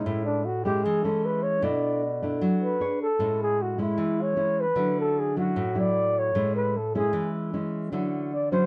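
A bossa nova excerpt with a sunny, sophisticated mood, moving in a straight 4/4 feel. A breathy flugelhorn carries the melody throughout, its dark, whispered tone marked by light vibrato, soft attacks and scooped notes that give it a vintage, intimate jazz character as it solos up front. Beneath it, a nylon-string guitar supplies the accompaniment with a classical, thumb-plucked sound, its fresh strings lending the part a warm acoustic glow. The harmony drifts between Amaj7, Bm7 and Dmaj9 colours, with a brief Bm13/D passing through near 2.8 seconds. Close, detailed microphones and very little reverb keep both instruments present and near to the listener.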